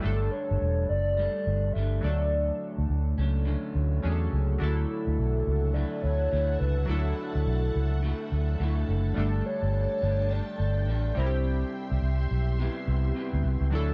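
A relaxed 105 BPM groove in 4/4 with a 60% swing on the sixteenths sets up this hazy, sunny indie pop fragment in D major, drifting through suspended and major-seventh chords. Up front, a round, foam-muted vintage electric bass gives the low end a dark, amped weight, while an electric guitar through a small old amp adds slightly broken-up, compressed picked accompaniment coloured by lush chorus and vibrato. Chorused retro synth keys glimmer beside it, glossy and warbling with pulse-width modulation, a filter sweep and a worn cassette-tape character. Over the top, a hollow, woody clarinet-like synth lead carries the melody with a soft, mellow tone, its own lush chorus and vibrato adding shimmer. At 5.2 seconds a silky string machine slides in with slow-attack sustained chords under ensemble chorus, deepening the dreamy haze of the dark production and its light reverb.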